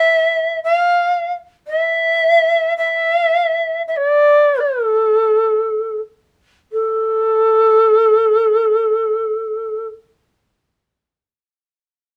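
In a free rubato pulse of about 40 to 62 BPM that slows over the first 6.7 seconds, this calm, austere excerpt of Japanese traditional chamber music features a solo bamboo shakuhachi, reedy and airy with a breathy chiff, tongued notes and vibrato, heard close and detailed in a moderate studio reverb until it falls silent at 9.9 seconds.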